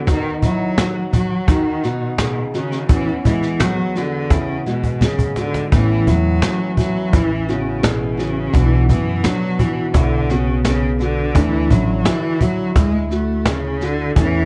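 A clear, bowed cello carries the melody from the opening moment, its smooth vibrato sitting up front yet with a distant air, over a fingerpicked steel-string acoustic guitar and a felt-muted upright piano whose soft, mellow arpeggios feel intimate. This is a gentle, hopeful acoustic folk passage at 85 BPM in a straight 4/4, cut from a longer piece. A snappy cajon sits up front while a vintage brush drum kit, with its punchy kick and medium-tuned snare, stays in the background, and a drum fill from 4.8 to 5.7 seconds ushers in a woody pizzicato upright bass. The harmony moves through B69, Eadd9, Aadd9, Bm and Dsus2. Light reverb and a dark, warm production with a rolled-off top keep the whole sound rounded.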